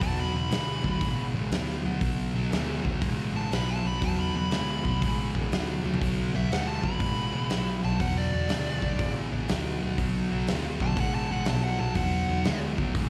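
A swung 4/4 groove at 120 BPM drives this gritty, heavy blues rock power-trio excerpt with a southern rock edge, sitting on a B minor chord throughout. A thick, double-tracked fuzz guitar stands up front with a distorted, picked riff in its low register, coloured by slapback echo. Beneath it, a vintage electric bass gives a dark, round, foam-muted tone, while a big acoustic rock kit of hi-hat, kick, snare and toms brings a tight kick, a medium-tuned snare and a mid-forward, rolled-off top, with a drum fill at 5.8 seconds. Over this, a biting, bright lead guitar takes an overdriven, picked solo in a higher range, also carrying slapback echo, until it stops at 12.6 seconds. It sounds like a live gig heard through the venue's PA, with only a touch of club reverb on the whole mix.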